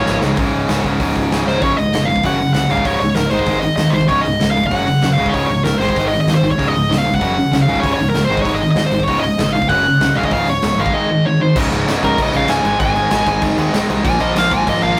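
A dark, smooth lead guitar with overdrive sits up front and carries the melody through the whole of this energetic, rowdy punk rock excerpt, then moves into a solo from 11.6 seconds. Beneath it, two tight, bright distorted guitars pick a riff across the full length, one placed forward in the mix and the other further back. A very quiet, double-tracked fuzz guitar appears only in the opening instant and returns at 11.5 seconds. A growling picked bass, overdriven and captured both direct and through an amp, anchors the low end, while a big acoustic rock kit with a punchy kick, medium-tuned snare, hi-hat and sparkling crash cymbals drives a straight beat, with fills at the very start and at 1.5 seconds. The riff cycles through Db5, Gb5 and Ab power chords, and the rough rehearsal-room sound carries light reverb and a saturated edge.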